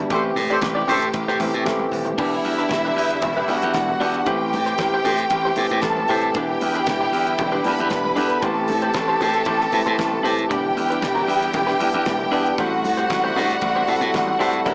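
Lush, vibrato-rich violins step up front at 2.2 seconds to carry a second line over a sultry, danceable disco groove at 115 BPM, cut from a longer piece and rocking between Am7 and Em7. Underneath, a glassy, punchy slap bass and a barky tine electric piano through a combo amp drive the accompaniment, joined by a twangy clean electric guitar in the background, a biting string section holding sustained chords, a damped 70s kit with a fat snare and tight kick, and very quiet ringing congas. A distant, loose horn section fires tape-echoed stabs only in the opening second, within a band accent that runs to 2.2 seconds, and the whole mix carries light studio reverb and a small-speaker sound.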